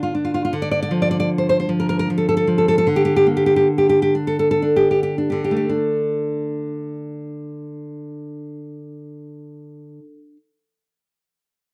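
Melancholic and wistful, this fragment of a romantic solo classical guitar piece in D minor and 3/4 moves with a rubato feel between 54 and 79 BPM, its brilliant, fingerpicked nylon-string guitar sitting up front in a dry, close 1970s-style studio sound with light reverb, slowing through the first 5.7 seconds as Dm gives way to Gmadd9/D before settling on D5, with the instrument tuned to A4 = 445 Hz.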